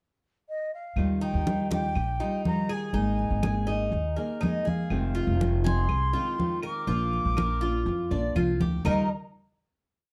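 A straight 4/4 groove at 122 BPM sets this short, sunny Cuban son and guajira piece in Eb major in motion. The mellow silver concert flute opens alone at 0.5 s with an airy, straight-toned pickup, crisp in its chiff but heard from a distance and slightly unsteady, before the band enters at 1.0 s. Ringing, medium-tuned congas, struck close and dry with hard hands in slaps and open strokes, play beside an up-front, thumpy, gut-strung upright bass playing a syncopated pizzicato figure. Woody, band-limited claves keep a two-bar time line in the background, while a classical nylon-string guitar strums and fingerpicks with muted slaps. From 1.2 s a bright, metallic Cuban tres with double strings weaves a picked, arpeggiated guajeo under the flute's motif-based call phrases, over a cycle of Ebadd9, Absus2, Fm7 and Bb that resolves to a final Ebadd9 in a dark, moderately reverberant mix.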